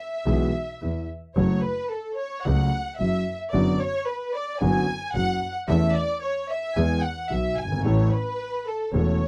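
A rubato tango in 4/4 with a passionate, sultry mood, this excerpt from a longer piece opens with a smooth, up-front bowed violin section that sounds alone for its first moments and carries the second line with even vibrato until 9.3 seconds. From 0.3 seconds, a dark, mellow concert grand piano with audible action noise and deep bass supplies intimate accompaniment, while a single bowed double bass with a bright, focused tone sits distant beneath. The chords move from E through F#m, Bm/F# and A/E, back to E, and settle on A, all in a dry, close 1970s-style studio sound with light reverb.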